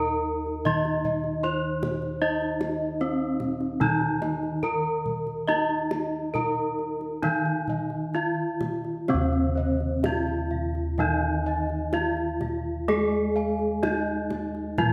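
Javanese gamelan in pelog barang on Eb, this serene, shimmering passage, cut from a longer piece, moves at 63-77 BPM in a straight 4/4. Up front, a bright bronze metallophone struck with a horn mallet carries the melody, its paired tuning producing shimmering beats, while a second horn-mallet metallophone sits just behind it in a lower register as accompaniment. Bossed gongs spin arpeggios high above with a round, airy tone, and another set of bossed gongs anchors the bass with a beating, bronze resonance. The kendang joins at 0.5 seconds, its soft hands giving a tight, acoustic pulse with a live-room feel. At 9.1 seconds the music shifts into a new section as a third metallophone, played with a wooden mallet, adds ringing arpeggios of its own. A recital-hall reverb with a 1.3-second decay lets the metal tones bloom and linger.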